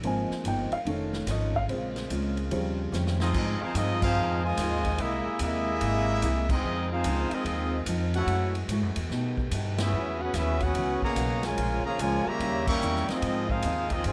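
Heard in a moderate club reverb, this brassy, energetic big band swing excerpt opens on a mellow, intimate baby grand piano, its action noise audible, over a woody pizzicato upright bass up front, a picked steel-string acoustic guitar in the background, a very quiet, tight saxophone section holding dark sustained chords, and a swinging drum kit with a punchy kick. A drum fill at 2.9 seconds hands off to the ensemble, and at 3.2 seconds the piano drops out as a clear trumpet section takes the melody with light vibrato while a bright, close-miked trombone section carries a second line. Band accents punctuate the rest, over rich altered and extended harmony.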